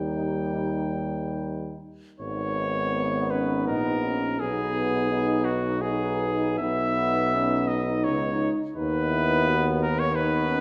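Classical brass band music, hymn-like, yearning and solemn, sways in three with a free rubato feel as an up-front cornet carries the smooth melody over a warm, lightly vibrato French horn section, a bright trombone with vibrato, a distant, roomy euphonium and a clear, prominent tuba bass, heard in a wet recital hall in this short cut from a longer piece.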